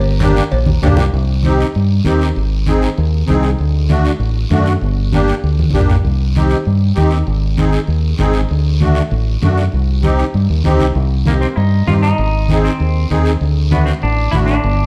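A brisk 196 BPM cumbia groove in C minor, danceable and passionate, rides on a round, punchy fingered electric bass up front, with a shimmering, reedy musette accordion, low-tuned congas and a raspy guiro underneath, while ringing cowbell and timbales sound only until 1.0 seconds and a bright, twangy clean electric guitar with spring reverb opens the excerpt and returns at 11.3 seconds, all in a dark, warm production with a large studio reverb.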